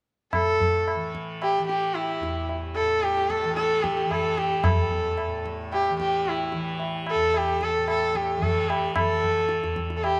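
A nasal, bowed sarangi with sympathetic strings carries an introspective, longing Hindustani classical melody up front, gliding smoothly with light vibrato, portamento and tape echo over a softly plucked, buzzing, shimmering tanpura drone and high-tuned, short-ringing tabla in straight 4/4, all heard together from 0.3 to 10.2 seconds in a moderate plate reverb, as a fragment cut from a longer piece.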